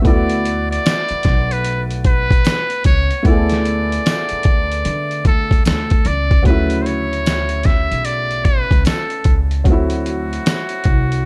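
A boxy upright piano, softened by cassette tape, and a gritty, sampler-style drum kit with a thumpy kick and fat snare open this cosy, dreamy, swung lo-fi hip hop excerpt, joined by a breathy, buzzy muted trumpet melody, a woody pizzicato upright bass and a jingly tambourine in the background, all in a dark, small-room production whose harmony moves from D6/9 to Dmaj9 at 6.5 seconds and D7 at 9.7 seconds.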